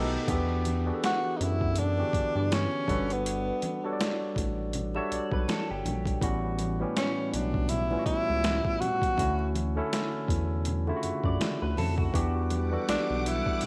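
A band accent opens this sultry, introspective neo-soul and R&B excerpt at 81 BPM, with a lightly swung feel in E dorian, as a barky, overdriven tine electric piano and a rubbery, hollow square-wave bass settle over gritty, pitched-down boom bap sampler drums with a thumpy kick and high-tuned snare and very quiet, ringing congas; a breathy tenor saxophone takes the jazz-style lead from 1.1 s with vibrato, subtone, scooped notes and slapback echo, a dark, lo-fi electric guitar through a small old amp adds brief lush-chorused lines, and a swirling, phased vintage string machine returns at 12.1 s, with light digital reverb around the band.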